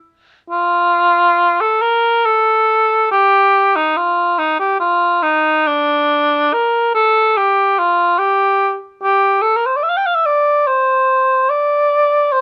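This classical piece for unaccompanied cor anglais has a serene, lyrical mood and a free, expressive character. It moves at about 71 BPM in 3/4, with uneven beats and rubato, in F major, tuned to A4 = 441 Hz. The cor anglais plays alone from 0.5 to 12.4 s, ranging from D4 to G5. Its tone is warm and vintage, shaped by light vibrato and a soft attack. Close, detailed microphones and very little reverb keep the instrument up front in this short passage cut from a longer piece.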